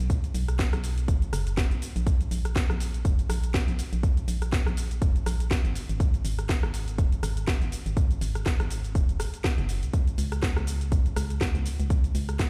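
Deep house with a late-night, moody feel, cut from a longer piece, where a punchy, up-front electronic kick plays alongside a house kit of cabasa, metallic hats, rim click and cracking snare, while a hollow, dark, organ-like FM bass with fast, decaying notes pumps under sidechain, all heard through a big sound system in a bare room with large studio reverb.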